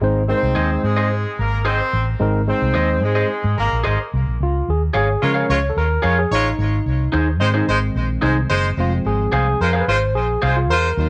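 A barky, lightly overdriven tine electric piano and a dark, round, foam-muted fingered bass open this uplifting, warm soul excerpt at 110 BPM in Db major. A jazz-style horn section carries a second line through tape echo, while a twangy, slightly broken-up guitar adds picked, compressed stabs. At 4.4 seconds the electric piano takes a solo over chords moving from Db to Ab to Fm, with the horns sitting distant and roomy with light vibrato, all in a straight 4/4 under light reverb.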